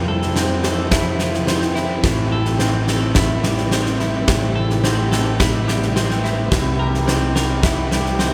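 In a moderately reverberant hall, this brief, melancholic and brooding post-rock passage in A minor at 107 BPM moves from Fmaj7 to Am7 and then C7, with a bright, clean twelve-string electric guitar picking compressed arpeggios over a dark, round fingered electric bass, a shimmering hammered dulcimer ringing in the background, a very quiet, blurred granular cloud pad holding slow-attack detuned chords, and a huge arena drum kit entering at 0.2 seconds up front with a punchy kick and fat snare in a pumping room.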